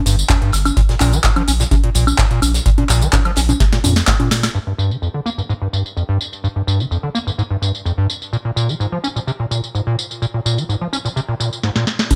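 Hypnotic and gritty, this acid house excerpt at 127 BPM opens on a drop where a thick, triangle-wave sub bass with tube saturation and sidechain pumping, a deep electronic kick and a very quiet soul drum kit with a rolled-off top play alongside a squelchy, resonant square-wave acid bass riff bathed in lush chorus and digital delay, while a booming, up-front analog drum machine sounds crisp snare, metallic hats, handclaps, congas, tambourine, woodblock and crash through low-pass filters; by 4.5 seconds the sub, kick and soul kit fall away, leaving the acid bass under a filter sweep alongside the drum machine in a dry mix, with drum fills arriving at 3.6 and 11.6 seconds.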